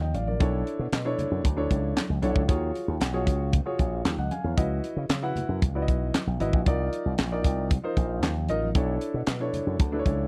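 A straight, danceable groove in 4/4 drives this short cut from a longer early-eighties boogie funk track, which has a late-night mood. A tight acoustic funk kit sits up front in a small room, where a high-tuned snare, a tight kick, hi-hat and handclaps carry the beat. A punchy, amped slap bass run through an envelope filter also sits up front, alongside a grand piano with an intimate, natural tone and audible action noise. Very quiet congas with a thin skin and soft hands sound distant, as if heard in a large room. The harmony moves through Bm11, D#m11, C#m11 and Cm11 before returning to Bm11, all within a close, dry, 1970s-style studio sound.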